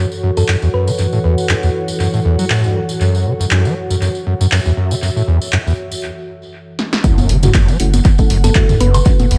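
A squelchy, overdriven acid bass with a resonant filter sweep drives this gritty, trippy acid house excerpt in F# minor at 119 BPM, pumping against a warbly, lo-fi tape-like pad that holds F#m7 under a filter sweep, an airy breathy pad, a jingly tambourine, a punchy analog drum machine with congas, handclaps, hi-hat, snare, toms and woodblock, and brief tine-like thumb-piano plucks at the start and end. After a break from 6.0 seconds and a drum fill at 6.8 seconds, the drop at 7.0 seconds brings in an up-front electronic kick, a thick saturated sub bass on F#1, dark detuned chord stabs with a moving notch, and a very quiet electronic impact, while the tape pad falls away. The echo-heavy mix sits in light digital ambience, with analog delay trailing the drums, plucks and stabs.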